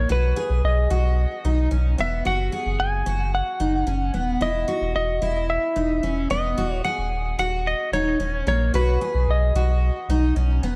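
Dream pop at 111 BPM in a floating, dreamy mood, this short cut from a longer piece sets a dark, compressed slide lap steel melody with tape echo, which falls away at 10.3 seconds, over shimmering octave-doubled arpeggios from a picked twelve-string acoustic guitar with subtle chorus and tape echo, all anchored by a deep, round sub bass, moving through B, F#sus4, E5 and D#m7 in a small room with light reverb and a warm, dark production.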